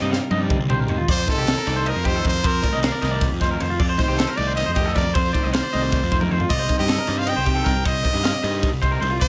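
A lightly reverberant, polished studio sound frames this wistful, intricate slice of math rock and midwest emo, moving at 310 BPM in 7/8 and opening on a Cm7 chord. A crisp fusion drum kit with a punchy kick, high-tuned snare and dark cymbals opens with a fill. Beneath it, a compressed twelve-string electric guitar sits in the background until 1.1 seconds, a twangy clean guitar picks arpeggios through vibrato and plate reverb, a double-tracked overdriven garage guitar plays the riff, and a fuzz-laden picked bass holds the low end. At 1.1 seconds a brilliant, close-miked trumpet takes the melody up front with light vibrato, plate reverb and tape echo, and the drums fill again at 6.2 seconds.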